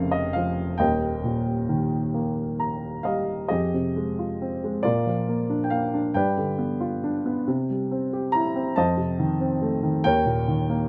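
In a slow, rubato 6/8 at 45 beats per minute, with uneven, breathing pulses, this melancholic and reflective classical fragment for solo baby grand piano settles into F minor at 3.5 s, following a brief fill from 2.1 s. The dark, mellow piano sits up front with a short sustain, reaching from deep bass notes into the upper register as the harmony moves through Bb minor, Eb, G7, C and F7 toward Eb7. Close, detailed miking and light reverb give the sound an intimate, natural presence.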